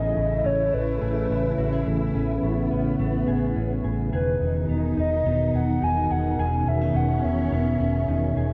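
From the first moment, a hollow, woody clarinet-like synth lead with chorus, delay and vibrato floats its melody over a silky vintage string machine's sustained chords, a mellow electric guitar's compressed, delay-touched arpeggios and a round, foam-muted vintage bass, in this ethereal dream pop excerpt at 106 BPM in E major, moving from Amaj7 to Emaj7 at 4.1 seconds inside a dreamy mix soaked in plate reverb.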